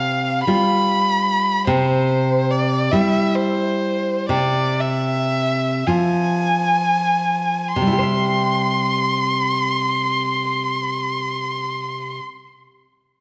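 Bathed in the long, wet reverb of a recital hall, this serene and lyrical romantic duo in a rubato 6/8, cut from a longer piece, sets a single bowed violin's warm, expressive melody, sung with vibrato, soft attacks and portamento, up front beside a bright, fresh-stringed classical guitar fingerpicking the accompaniment, while the pace eases from 0.5 to 7.8 seconds as the harmony moves from G7/C through C and Fm/C back to C at the start of a brief second section.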